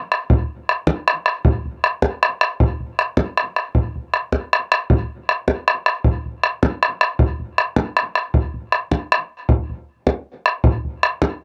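Celtic folk in a spirited, driving, straight 6/8, this short cut from a longer piece features a lone bodhran, boomy and saturated, sitting up front and dry in an open outdoor setting as it carries the pulse from 0.1 to 11.3 seconds through two passes of the same section.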